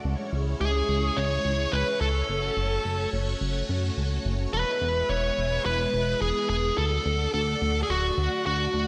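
Bright 1980s-style digital production bathed in a lush hall reverb frames this driving, cinematic synthwave fragment in F# minor at 107 BPM, where a full, vintage string machine with phaser and ensemble chorus holds soft-attack sustained chords over a glossy, retro pulse-wave synth bass with tube saturation, while a smooth overdriven lead guitar, picked and up front with 12-bit sampler grit and delay, carries the melody from 0.6 seconds over a C#m, F#m, E, D progression.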